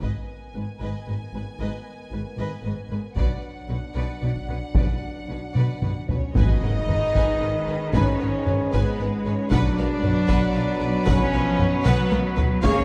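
A dark, warm production sits in a moderate scoring-stage reverb, as a taiko ensemble played with heavy sticks in a live room drives this epic orchestral film cue at 76 BPM in a straight 6/8. The mood is relentless and heroic, moving between G#m and Bm in this cut from a longer piece. Bowed violins carry a lush, smooth melody with a second violin line behind it, while focused, close violas fill the middle and rich cellos and intense double basses anchor the low end beneath mellow, distant French horn chords. A drum fill leads into the second half at 6.4 s, where a huge, bright impact sounds very quietly and an articulate timpani note struck with hard mallets lands close and dry. From there a present, tight trombone section adds sustained chords, and roomy trumpet stabs sit in the background until the close at 12.8 s.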